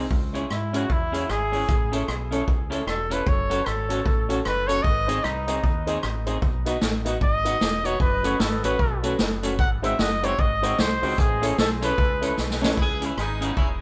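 A slightly broken-up electric guitar, mellow, woody upright piano stabs and a round, punchy dub bass open this energetic, mischievous ska excerpt in C# minor at 152 BPM with a swung feel, joined by a roomy big-band drum kit with a boomy kick, rim clicks and hi-hat, while a trumpet with light vibrato and dub echo takes an up-front solo over chords moving from C#m through F#m and G#7, until a drum fill at 12.4 seconds leads into a present, jazz-style horn section, also echoed, at 12.8 seconds.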